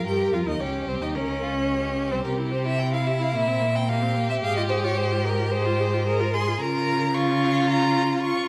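A quick classical-period movement for string quartet, dramatic and urgent, heard in a short cut from a longer piece. The first violin carries the bowed melody high above the group with a clear tone and vibrato, sounding distant in the hall. The second violin, also set back, plays an expressive second line with a rich tone, vibrato and portamento. The viola enters at 0.1 seconds with close, focused accompaniment, while the cello sits up front as the strongest voice, grounding the bass with a rich, focused tone and vibrato. The harmony moves from G diminished through C and C7 over B-flat to F minor over A-flat and B-flat minor over D-flat, giving the passage a restless pull. A recital hall reverb with a 1.4-second decay surrounds the quartet in a dark, warm production.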